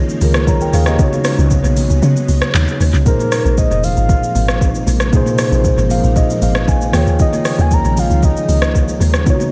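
A dry, echo-heavy mix frames this short amapiano excerpt at 116 BPM in a straight 4/4, setting a deep, late-night mood. A mellow, clean tine electric piano carries the accompaniment through dub echo, while a silky vintage string machine sits in the background with soft ensemble-chorused chords drifting over suspended ninth harmonies. Underneath, a dark, round log drum bass hits with a fast, percussive attack. A smooth, tape-warm R&B kit stays up front with soft kick, handclaps, hi-hat, rim click and shaker, its kick dropping out from 2.0 s until 3.1 s, as very quiet, bright, high-tuned congas add a thin acoustic edge. At 3.1 s a full, warbling octave-layered synth lead enters with chorus, vibrato and echo, and the electric piano adds a fill from 5.6 s.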